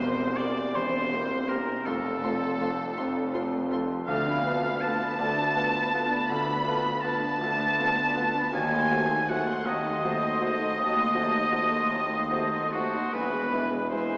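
A warm grand piano carries the melody up front in this passionate, brooding romantic movement for piano and orchestra, moving in a rubato 12/8 through shifting harmonies that settle on E. A clear, distant oboe and a close, soft-attacked section of muted violins share a second line, while another veiled violin section doubles the melody in the background, and very quiet muted violas add lush accompaniment. Mellow tuba, hushed cellos and background double basses form the bass, and barely audible timpani sound only in the first 0.7 seconds. A wet hall reverb fills the cut-off passage, which has a small-speaker sound.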